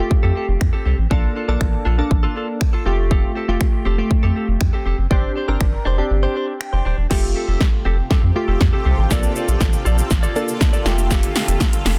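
A steady, straight pulse from a punchy house drum kit drives this euphoric, upbeat dance-pop excerpt, with kick, snare, hi-hat, shaker, finger snaps and crash layered up front and a touch of soft clipping on the snare. A round, deep analog bass sits just as far forward, its dark sustained tone breathing with sidechain pumping, while glassy digital keys carry the accompaniment with chorus, phaser and the same pumping. A clean, direct-recorded electric guitar picks out a compressed riff alongside them with a subtle chorus. The kick drops out for a moment as a keys fill leads into a build-up and drum fill, and at 7.8 seconds a shimmering, ethereal pad enters with slow-attack sustained chords, octave-up shimmer and its own reverb. A very quiet, crisp group handclap lands at 11.6 seconds, all of it sitting in a dry, dense and heavily limited modern mix.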